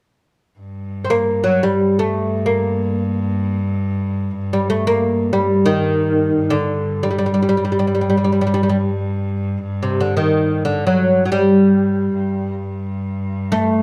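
An Arabic maqam ensemble piece in G maqam nahawand, this free-time excerpt carries a longing, hypnotic mood, opening with a bowed cello drone on G2 at 0.6 seconds that sounds biting and nasal, with a light vibrato. From 1.0 seconds a mellow, woody, fretless oud plucked with a plectrum sings the melody between C3 and C4, its double strings deep and up front, while the earthy cello sits beneath it. A moderate recital hall reverb surrounds the pair.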